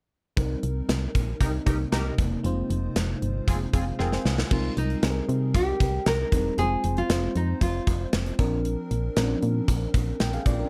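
This urgent, dramatic slice of 1980s-style pop, cut from a longer piece, opens at 0.4 s with a gated drum kit, a solid FM bass and a lush FM electric piano with a soft pad layer all starting together. The drums sit up front with a bright stone-room sound, punchy kick, medium-tuned snare, bright cymbals and hi-hat. The round, dark digital bass has a fast attack and a decaying tone, while the dreamy, detuned electric piano carries the accompaniment through a chorus effect. From 1.4 s a funky, warbling polysynth adds vintage stabs, and from 1.5 s a very quiet, ethereal pad briefly holds mellow sustained chords underneath as the harmony moves from Cm7 to Fm. A drum fill leads into the second section at 4.5 s, where a full-bodied, fingerpicked nylon-string guitar steps forward with the melody, treated with slapback echo, over chords that pass through Cm7 and Fm to Bbadd9. The overall mix is dry, with little reverb.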